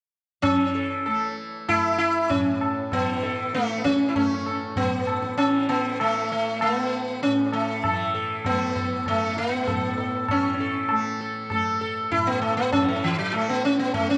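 From 0.4 seconds a bright, plectrum-plucked sitar rings up front with buzzing sympathetic strings and analog delay, over a softly plucked, shimmering tanpura drone and a distant, high-tuned tabla with a short ring, in this radiant, serene Hindustani classical fragment at 98 BPM in 4/4, tuned to A4 = 441 Hz and bathed in moderate plate reverb with an echo-heavy, cassette-tape character.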